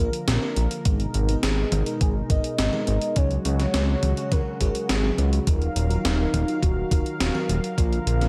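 Nostalgic and cinematic, this short synthwave cut from a longer piece moves at 104 BPM in Eb minor, with a velvety, wave-folded sawtooth lead carrying the melody over a smooth, detuned analog pad that pumps under sidechain and a fat, up-front sawtooth bass with a filter sweep. A lush, dreamy FM electric piano with a soft pad layer adds stabs from the background through chorus and phaser, while a gated 80s digital drum machine plays hi-hat, toms and a gated-reverb snare. A thumpy, tape-warm electronic kick enters at 0.9 seconds, under a chord progression of Bb, Abmadd9, Dbsus4 and Ebmadd9 and a light reverb.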